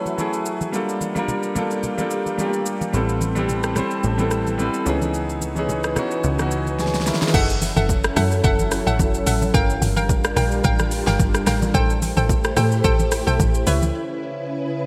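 A woody log drum bass stands out once the drop hits at 7.3 seconds, its punchy, fast-decaying FM tone giving this deep, hypnotic amapiano excerpt its low-end bounce. Before that, a clear, intimate concert grand piano carries the accompaniment with audible action noise and long sustain, while a funky, sawtooth-edged analog bass plucks underneath from 2.9 seconds, and the piano closes its part with a fill just ahead of the drop. A silky, dark string machine holds sustained chords throughout, breathing with ensemble chorus and sidechain pumping, alongside the overdriven, up-front deep house kit with its punchy kick, fat snare, metallic hats, shaker, rim clicks and gated reverb. Low-tuned congas with thick, damped skins sit softly in the background, and after the drop a hollow, bouncy square-wave pluck adds bright detuned stabs treated with chorus and delay. The minor-seventh chords cycle unhurriedly over a lightly swung groove, the drums fall away for a brief break near the end, and the whole excerpt sits in a lush hall with a glossy, 1980s-style digital sheen.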